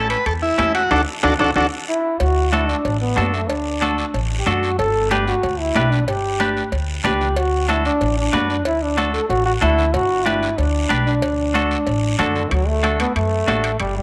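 A wet spring reverb surrounds this festive, danceable cumbia excerpt in D major at 186 BPM, where a buzzy vintage combo organ with light vibrato carries the up-front melody until 1.7 seconds, under a band accent and drum fill. A warm trombone enters at 1.9 seconds and from 2.2 seconds takes an up-front solo with scooped notes. Behind it play a woody, thumpy pizzicato upright bass, a clean, compressed semi-hollow electric guitar picking the accompaniment, a raspy, close guiro, and ringing timbales, cowbell and high-tuned congas in the background.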